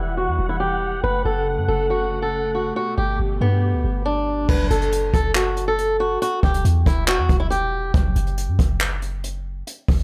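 Set in 4/4 at 139 BPM with a half-time feel, this melancholic, eerie trap cut from a longer hip hop piece sits in F# phrygian, with a boxy, fingerpicked swing-style acoustic guitar carrying the melody over a deep, sine-toned 808-style bass that runs throughout. Lush, woody bowed strings with vibrato hold sustained chords until 4.5 s, when a jazz brush kit enters with a boomy kick, dark cymbals, hi-hat, handclaps and crash. The guitar drops out at 7.9 s for a break in which the bass and brushed drums play on in a small room ambience.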